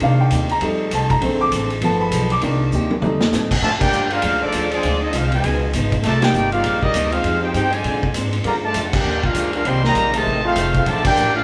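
Big band swing jazz with an energetic, brassy character, cut from a longer piece. The opening is led by a polished grand piano with short sustain, over a woody pizzicato upright bass on steel strings, a picked archtop guitar with old strings in the background, and an up-front vintage drum kit with dark cymbals, a tight kick and a gritty, saturated edge. A drum fill at 2.7 seconds sets up the entrance of the horns at 3.6 seconds, as the piano drops out. A clear trumpet section with a soft attack carries the melody up front, and a warm trombone section plays a second line, both sections with light vibrato. The full band hits several accents along the way, and it plays live in one room, wrapped in a wet large studio reverb.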